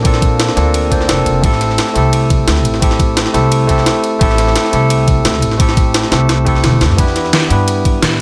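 Dreamy and lush, this short excerpt from a longer liquid drum and bass piece moves at 173 BPM in a straight 4/4, its harmony drifting from Bbmaj9 to Am7 at 1.4 seconds and settling on Em7 at 7.0 seconds. A bright, barky tine electric piano sits up front through a combo amp, playing clean accompaniment with a digital delay. Beneath it, a woody, thumpy pizzicato upright bass with steel strings holds the low end throughout. The drums stack three layers: a knocking, overdriven electronic kick; a pop kit with a deep snare, hi-hat and toms, both re-recorded in a small room; and a gritty, pitched-up, sampler-style jungle kit whose high-tuned snare and ride cymbal are compressed, overdriven and high-pass filtered. A drum fill from 6.6 to 7.0 seconds marks the turn to the final chord, and a light reverb with digital ambience gives the mix a soft sense of space.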